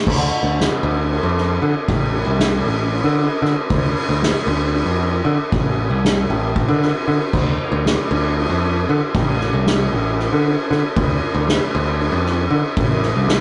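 A rough rehearsal-room recording with tube saturation, light reverb and a rolled-off top end gives this fragment of a longer psychedelic rock piece a mysterious, hypnotic air. In a steady 7/8 at 231 BPM counted in eighths, a bright, direct, punchy picked electric bass spans A1 to D3 in D minor. Beside it, an up-front, roomy drum kit played with soft mallets covers kick, a medium-tuned snare, ride and crash cymbals.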